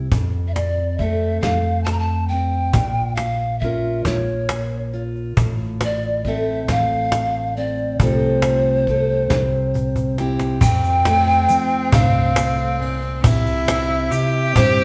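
Acoustic folk in a hopeful, peaceful mood at a slow 46 BPM in 6/8 and F major, where a breathy, hollow bamboo pan flute carries the melody up front over a full-bodied fingerpicked dreadnought guitar, round amped electric bass, a snappy, close and dry cajon and a dark brushed drum kit in the background, until a brush fill at 9.7 s leads into a second section at 10.6 s where a biting, earthy bowed cello adds a second line and a grainy tube shaker joins, all heard as a band playing live in a stone room with a wet reverb of about 1.2 s.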